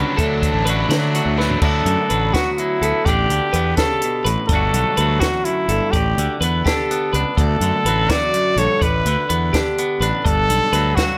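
Math rock and midwest emo in 6/8, this playful, wistful excerpt opens with a double-tracked overdriven guitar riff over bright twelve-string arpeggios, a clean picked electric guitar accompaniment, a growly fuzz bass and a compact cocktail drum kit with a punchy kick, high-tuned snare and dark cymbals. A drum fill at 1.4 s leads into the second section at 1.6 s, where the riff guitar stops and a clear, close-miked trumpet with light vibrato and slapback echo takes the melody over extended chords. The sound is dry, with the twangy, compressed clean and twelve-string guitars sitting behind the bass, drums and trumpet, which are all placed up front.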